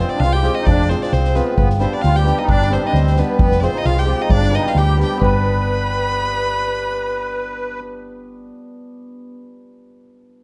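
Balkan folk in a restless, fiery Balkan wedding band style, this fragment of a longer piece moves at 132 BPM in 2/4 in G phrygian dominant, with a light swing on the sixteenths and chords shifting between Fm and G. A single bowed violin carries the melody with vibrato and a focused, boxy tone, while a reedy musette accordion with shimmering vintage tuning plays a second line beneath it, touched by slapback echo. A bright, ringing hammered dulcimer sits up front in the accompaniment, and a dark, round hollow-body electric bass, amped and fingered, anchors the low end just as prominently. A street-band drum kit with a boomy kick and medium-tuned snare plays in an airy, big-room sound from 0.2 s until it stops at 5.4 s, after which the other parts carry on and the dulcimer rings until 9.3 s. The production is dark and warm with light reverb.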